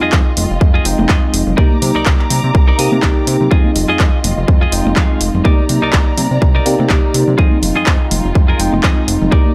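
A punchy, overdriven electronic kick sits up front in this funky, nostalgic filtered disco house excerpt, joined by overdriven house handclaps and pumping hi-hats, both re-recorded in a large room, while a fat, detuned sawtooth bass, a tine electric piano with medium tremolo and phaser through a combo amp, a bright, twangy clean electric guitar riff with vintage 12-bit sampler grit and a fill from 2.5 to 3.5 seconds, lush bowed violin-section chords, and soft-handed tube shaker and congas in the background all pump and sit under a low-pass filter over Fm7 and Cm9 chords in a digital ambience.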